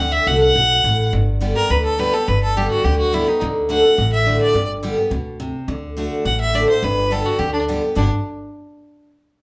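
Set in a lush studio reverb with the band playing live in one room, this brief, driving and virtuosic bluegrass clip features a focused fiddle with light vibrato carrying the melody up front, a full-bodied picked dreadnought guitar with fresh strings and audible finger squeak close beside it, and a woody, thumpy pizzicato upright bass underneath.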